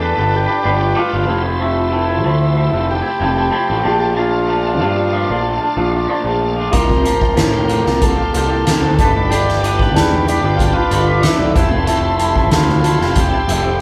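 Psychedelic rock with a hypnotic, hazy mood, cut from a longer piece, where a buzzy vintage combo organ carries the melody over a twangy, phased guitar riff, round fuzz bass and a gritty tonewheel organ holding sustained chords in the background through slow rotary and chorus vibrato, until at 6.7 seconds a soft-mallet drum kit with a fat snare and boomy kick arrives alongside very quiet, close congas, all of it played live in a stone room.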